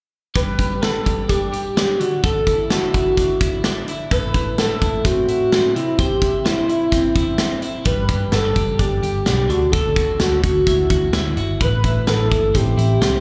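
A warbling, nostalgic lead carries the melody in this youthful, bright excerpt of jangly indie pop in G major at 128 BPM, its detuned, soft-attack tone sustained with vibrato, portamento, chorus, slapback echo and delay. A clean, compressed twelve-string electric guitar picks arpeggios with its own slapback echo and delay through a G, Dadd9, Amadd9 and C progression, while an up-front big rock drum kit drives with a punchy kick, medium-tuned snare and hi-hat. A dark, round, foam-muted electric bass with tube saturation joins at 7.9 seconds, and the whole performance sounds like a live gig heard through a club's PA with moderate venue reverb.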